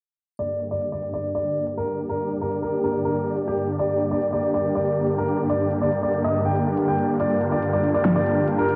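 Set in a lush hall reverb with a low-pass filter over the whole mix, this heavy, menacing half-time wobble dubstep excerpt at 141 BPM sits in G minor on a G minor chord, tuned to A4 = 443 Hz. From 0.4 s, a brilliant, up-front grand piano carries the melody through a dub echo, its action noise audible. Beneath it, huge detuned supersaw chords are swept by a low-pass filter, and an overdriven, layered electronic drum kit drives hi-hat and a huge snare in a small room. At 1.1 s, a cloudy, evolving granular pad joins with its own built-in reverb.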